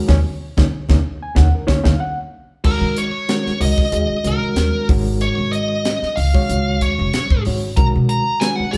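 Heard in a moderately reverberant stone room, this short cut from a longer electric jazz fusion piece captures a band playing live together, with a nocturnal, intense mood and a lightly swung sixteenth-note feel in 4/4. A gritty, reedy electric piano with fast tremolo, sounding through a combo amp, carries the accompaniment from the start. Beneath it sit a woody, thumpy pizzicato upright bass and a crisp, polished drum kit, up front, with dark cymbals, a high-tuned snare and a tight kick. Thin-skinned, low-tuned congas played with soft hands add a bright touch in the background during the opening, as the band hits an accent together and the drums play a fill leading up to 2.6 seconds. At 2.7 seconds a bluesy, distorted, picked lead guitar enters up front to carry the melody through the rest of the passage, over harmony that moves from Ebm7 to Ab9sus4 and then Bmaj9.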